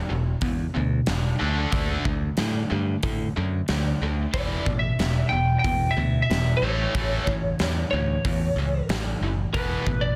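A double-tracked, overdriven electric guitar opens this heavy, aggressive hard rock excerpt, stating a bright, picked riff up front over power chords that move from E5 to D5. A growly, direct picked bass joins almost at once, and a big acoustic drum kit follows shortly after with a punchy kick, a medium-tuned snare and hi-hat, its sound dark and smooth in a large room. At 4.3 seconds a lightly driven lead guitar enters with a melody high above the riff, its tone slightly broken-up and compressed, carrying a slapback echo. The harmony shifts to an A chord at 6.6 seconds before returning to E5 near the close. Light reverb surrounds the parts, and the dense, heavily limited master keeps the straight, steady groove hard-hitting throughout this fragment of a longer piece.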